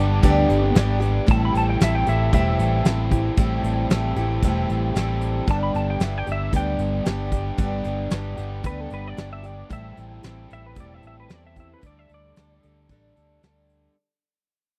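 A dry, close 1970s-style studio sound with a small room around it frames this jangly, open-road folk and heartland rock excerpt, which fades out across its 14 seconds. A clean, compressed semi-hollow electric guitar with analog chorus carries the melody, over a boxy, picked old ladder-braced acoustic guitar with audible finger squeak and a bright, double-tracked overdriven guitar riff. A round, amped fingered bass and a soft brush drum kit with a fat snare and punchy kick, entering at 0.2 seconds, sit up front as the chords move between G, Am7 and Dsus4.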